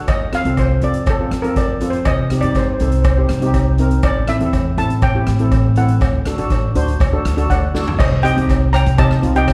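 Dramatic and driving, this calypso excerpt opens with a bright, close-miked lead steel pan soloing until 8.0 seconds over a mellow, dark second pan, both carrying a slapback echo. A woody, thumpy pizzicato upright bass anchors the chords, while an airy street-band drum kit with dark cymbals and a boomy kick, plus a metallic cowbell with its own slapback echo, drives the groove, and a drum fill at 7.7 seconds leads into a new section. It sounds like a live gig heard through the venue's PA, with light recital hall reverb.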